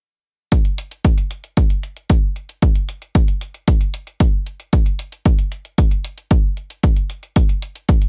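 An up-front, punchy analog kick drum leads this short italo disco excerpt, its tape-warm thump setting a straight four-four pulse with a sunny, romantic glow. Beside it, a sampler-style electronic hi-hat sits much lower in the balance, carrying the same tape-tinted character along with the faint air of a small room. Both parts enter together at 0.5 seconds, the kick stopping at 8.0 seconds and the hi-hat at 8.1. The overall sound is dry and close, in the manner of a 1970s studio recording, with little reverb around the drums. Cut from a longer piece, this brief drum-only passage offers the bare rhythmic foundation of a dance track.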